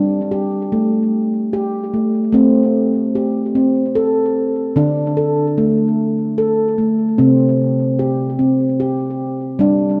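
A lone handpan opens this hypnotic, gentle world meditative piece, its bright stainless-steel tone ringing out with sharp finger strokes from the very first second. The instrument plays solo throughout, sitting up front in the mix and ranging from C3 to A4, with a tape echo trailing each note. The tempo is an unhurried 74 BPM in 3/4 with a straight feel, and the tuning sits at A4 = 441 Hz. The harmony moves from G5 to Am at 2.3 seconds, then through D5 at 4.8 seconds to C5 at 7.2 seconds. A long, wet plate reverb and an echo-heavy mix surround the handpan with a lingering halo, giving this short cut from a longer piece a spacious, trance-like calm.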